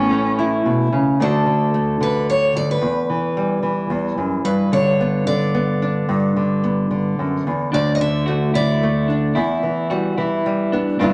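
A wet club reverb surrounds this gentle, nostalgic acoustic folk piece for a small band, cut from a longer performance in D major at 110 BPM in a straight 3/4. It opens on a brief bowed cello line, nasal and boxy with smooth vibrato, while a clean, hollow-bodied electric guitar picks tremolo-tinged arpeggios. The up-front nylon-string guitar fingerpicks the accompaniment throughout, its fresh strings giving a small, warm sound beneath chords that move from A to D, Emadd9 and G6. At 1.2 s a bright, full-bodied dreadnought steel-string guitar takes the lead with a picked melody, finger squeaks audible on the strings. The electric guitar's arpeggios return at 7.7 s as the chords cycle back through D and Emadd9, and the steel-string melody ends at 9.9 s.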